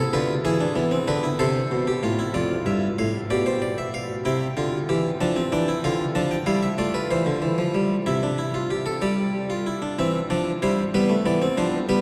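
In a straight 6/8, this lively and elegant passage from a longer baroque-style three-part fugue features a solo Flemish-style harpsichord with a single set of strings, close-miked, bright and plucked, set up front within a dark production and a long cathedral reverb, its chords moving steadily through the brief span before it breaks off.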